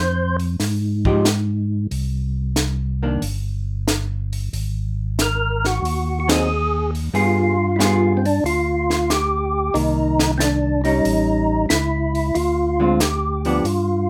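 A percussive tonewheel organ carries the melody, fat and lightly overdriven with key click, chorus vibrato and a slow rotary speaker, sounding briefly at the opening and then returning at 5.2 seconds to sing in a narrow range from C4 to C5. This is bluesy, soulful soul jazz for organ trio in C minor, swinging in 4/4 at 92 BPM. A second tonewheel organ holds down the bass line for the full 14.1 seconds, sharing the same overdriven, rotary-speaker character, while a compact cocktail drum kit enters at 0.4 seconds with a punchy kick, a high-tuned snare, hi-hat and a dark ride cymbal, all dry and up front. A vintage hollow-body electric guitar, clean, picked and dusky in tone, comps underneath from 1.1 seconds. The band hits an accent together at 6.2 seconds, and the harmony moves through Fm, Ab7, G7b9, Cm7, A7 and Dm7b5 in a light reverb, the passage cut from a longer piece.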